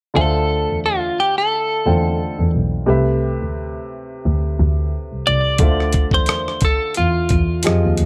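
Soulful and introspective, this short neo-soul R&B excerpt moves at an easy 88 BPM in D dorian, with a lightly swung feel over Dm9 and Am7/C chords. A woody, vintage upright piano with short sustain plays accompaniment beneath a clean, picked electric guitar melody carrying a slapback echo, while a dark, intimate double bass is bowed sul tasto with light vibrato and an airy, soft attack. At 5.6 seconds a gritty, compressed sampler-style drum kit enters up front with a thumpy kick, hi-hat and rim click, all in a dry, dark mix.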